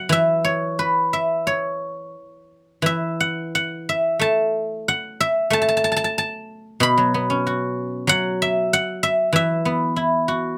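The recording is close and detailed, with a dry, intimate room that places a solo guzheng up front. This is a short passage of Chinese traditional music for solo plucked strings, taken from a longer piece and lasting 10.6 seconds. The guzheng carries the whole passage alone, its fingerpicked tone silvery and ringing, spanning from B2 up to B5. The time flows in a free, rubato manner over an underlying 4/4 metre, giving the playing a graceful, unhurried breath. The mood is elegant and pastoral, like a scene of open countryside.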